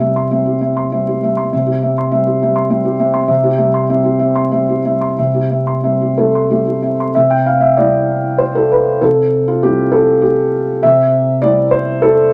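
A felt-muted upright piano plays alone from the start, its mellow, intimate tone sitting up front as it moves through a hopeful, tender passage of neoclassical minimalist piano in C major. The playing is rubato in 3/4, hovering around 90 to 104 BPM, spanning C3 to C6 and shifting into a new section at 7.1 seconds before this short cut from a longer piece ends at 12.3 seconds. A wet studio reverb and a layer of vinyl crackle surround the soft, thick-felt sound.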